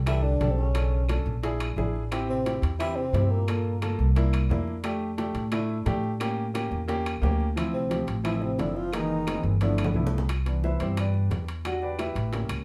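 Up front, a woody pizzicato upright bass drives this sunny, danceable Afro-Cuban jazz excerpt at 176 BPM in 4/4, alongside a warm baby grand piano comping with short sustain through jazzy changes, while round, low-tuned bongos, ringing metal-shell timbales and distant claves sit back in the mix. A dark, breathy tenor saxophone carries the melody with subtone, vibrato and scooped notes, supported beneath by a soft, whispered trombone playing a second line in the background; both sound from 0.1 to 3.8 seconds and again from 7.7 to 10.1 seconds. After a drum fill at 9.6 seconds, the piano takes a solo from 10.3 seconds, all heard from further back in a reverberant studio room.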